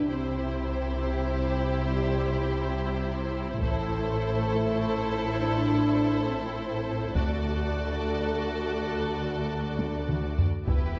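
A slow 12/8 pulse at 68 BPM, felt in dotted quarters, carries this dramatic, heroic passage of epic orchestral film score, cut from a longer piece. A warm violin section sings the bowed melody with vibrato over a lush second violin line and an intense viola accompaniment. A dark, distant French horn section holds sustained chords with light vibrato, while cellos sitting in the background and a smooth double bass section anchor the low end. The harmony moves from C to A minor to D. At 3.6 seconds a taiko ensemble enters, struck with hard sticks and sounding close and dry, and it drives a drum fill from 9.8 to 10.7 seconds. A moderate concert hall reverb gives the strings and horns a spacious, symphonic sheen.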